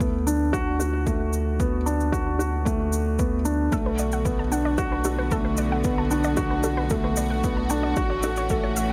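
A straight 4/4 pulse at 113 BPM comes from a punchy, overdriven electronic kick and a layered shaker, set in a small room with light reverb, as this melancholic, moving piano-and-strings electronica excerpt in B minor moves from D6 to Bm7 and then A6. A soft, felt-muted upright piano sits up front with audible action noise, repeating a mellow riff through delay, while a round sine sub bass pumps with the sidechain beneath it. At 3.7 seconds a dark, bowed string section enters with intimate sul tasto chords and light vibrato, joined by a lush, detuned, wave-folded unison pluck whose short, sidechained arpeggios echo through delay.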